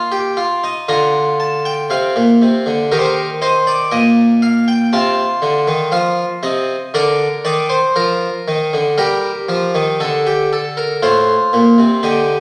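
A brilliant, airy harpsichord with plucked octave strings and a French-style voice sits up front in this excerpt from a baroque-style three-part fugue, played solo at 59 BPM in a straight 4/4. The mood is solemn yet driving, moving through Bb major harmonies such as Cm7/Eb and F7/C before turning to G minor at 9.0 seconds and closing on Am7b5. A wet recital hall reverb surrounds the instrument, whose lines span from A2 up to Bb5.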